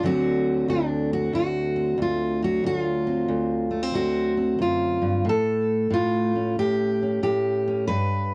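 Gritty and rollicking, this short cut of acoustic country blues in D mixolydian swings along at 92 BPM in 4/4, with a lone fingerpicked steel-string dreadnought guitar sitting up front, its fresh strings sounding full-bodied across a range from D2 to B4 as it moves from D7 to A7 at 5.3 seconds, all captured in a dry, close 1970s-style studio sound with light reverb.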